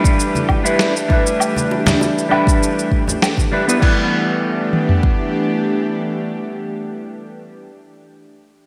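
Organic downtempo with a mystical, hypnotic mood, this short excerpt, cut from a longer piece, rests on a single sustained chord in a straight 4/4 feel. Up front, a dark, clean, fingered electric guitar plays accompaniment through lush chorus, delay and sidechain pumping, running from the opening to 7.7 seconds. Also up front, a tense, string-like drone holds sustained chords with a sawtooth, detuned unison body, a noise layer, slow attack, vibrato, long release, its own built-in reverb and the same pumping motion. An electronic, tape-tinged afro-pop kit pushes a deep kick and toms forward until 5.2 seconds. A gritty, compressed sampler-style kit adds crash, shaker, woodblock and a medium-tuned snare, while ringing acoustic congas and bongos, struck with hard hands in a small room, enter at 0.3 seconds and stop at 3.5 seconds. The whole mix is bathed in a long hall reverb with a bright 1980s-style digital sheen.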